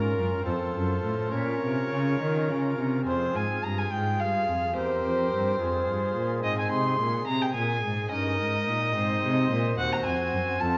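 Classical baroque-style sonata movement with continuo, flowing and grave at 71 BPM in a straight 6/8, cut from a longer piece and moving from Bb minor into F minor at 3.1 s, where a dark, reedy, period-style gut-string violin sings the melody up front, a pipe organ's nasal cornet solo stop with tremulant and romantic voicing supplies the accompaniment, and a smooth-topped, lightly vibrato gut-string cello bows the bass line, all three playing throughout in a reverberant recital hall with a soft, rolled-off top end.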